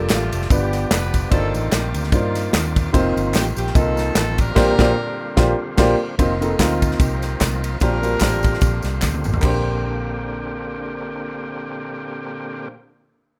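Soulful and jubilant, this uptempo gospel excerpt swings in 4/4 at 148 BPM in Bb major. An up-front baby grand piano and a dark, round, foam-muted electric bass carry the accompaniment throughout, while an overdriven tonewheel organ holds gritty sustained chords through a slow rotary speaker. A clear, tight jazz-style horn section plays the melody over an airy, punchy drum kit with handclaps and tambourine, all in a rough home demo mix with a small room sound; the band hits an accent from 4.6 to 6.2 seconds, and a drum fill at 9.0 seconds leads into a closing stretch where the horns, drums and percussion have dropped out.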